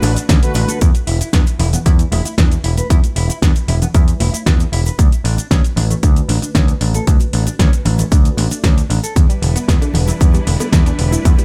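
Groovy and sleek, this nu-disco excerpt moves at 115 BPM in a straight 4/4 in E minor, cut from a longer piece and shifting between D6 and Em7 chords. A punchy, layered electronic kick sits up front from 0.3 seconds, joined by a pop drum kit with a fat snare, metallic hi-hats and shaker, both carrying studio reverb, while bright congas, cabasa and bongos played with hard hands tick away in the background. The overdriven picked electric bass is dark, round and direct, holding the low end prominently throughout. A clean, fingered electric guitar plays a riff through lush chorus and dub echo until 9.1 seconds, while mellow synth brass with a detuned sawtooth tone, filter sweep and vintage 12-bit sampler grit supplies sustained accompaniment in the background. A bowed symphonic string section with vibrato and a smooth top holds sustained chords with sidechain pumping at the start and returns at 9.2 seconds, when a full-bodied unison pluck also enters with pumping arpeggios carrying dub echo. 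The overall sound is dry, with little room reverb.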